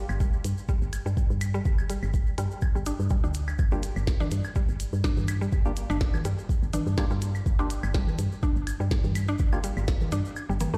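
Cool and hypnotic, this minimal techno excerpt in G minor runs at 124 BPM with a swung 16th feel, built on an up-front deep electronic kick, a tiny-snared click kit with clicky hats, a grainy tube shaker in the background, and overdriven claves, woodblock and congas treated with dub echo. A woody, round FM bass pumps under sidechain, while a bright mallet-like synth pluck riff shimmers with chorus, phaser and dub echo, joined from 3.7 s by a hollow, wave-folded organ stab with a cassette-tape tinge. The mix sounds as if played on a big sound system in a bare stone room, and the kick drops out at 10.4 s.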